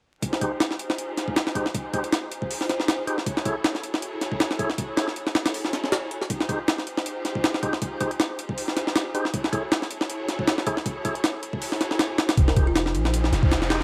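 A gritty, raw jungle drum and bass excerpt at 158 BPM in F minor, heard through light reverb and vinyl crackle, with a compressed, pitched-up sampler-style kit up front driving a frenetic swung groove of thumpy kick, medium-tuned snare and filtered hats. Beneath it, a dark, lush bowed string section with vibrato holds Fm7 and Gbm7 chords under a filter sweep, while a fat, lightly overdriven tonewheel organ with key click and fast rotary speaker adds stabs dipped in dub echo. At 12.4 seconds a deep, mellow sine-like 808-style bass arrives for the build-up, joined by a brief woody, buzzing kalimba figure in the background and an electronic riser from 13.0 seconds as the organ takes its own filter sweep.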